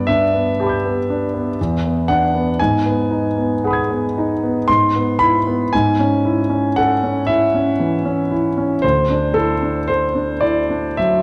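Bathed in a wet recital hall reverb, this serene, luminous excerpt of impressionist classical solo piano unfolds in a rubato 3/4 on a clear, intimate grand piano placed up front with audible action noise, its natural tone spanning D2 to G#6 as colouring harmonies such as G69, G#m7 and Amaj7/G#, closing on Dsus2 at 8.8 seconds, drift past.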